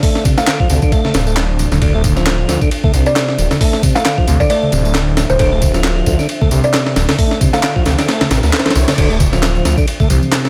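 A swung, funky breakbeat groove drives this swaggering clip, led by an up-front, gritty, pitched-up sampler kit with a thumpy kick and high-tuned snare, layered with overdriven electronic tambourine and handclaps and soft-handed, low-tuned congas sitting in the background. A swirling, detuned saw bass sits up front under a lightly overdriven tonewheel organ riff with key click, fast rotary speaker and delay, while a deep, moody pad holds very quiet sustained Dm7 chords. A woody kalimba melody, crushed into a lo-fi telephone tone with 12-bit grit and delay, plays until 7.7 seconds, and a faint electronic riser sweeps in between 7.3 and 9.0 seconds.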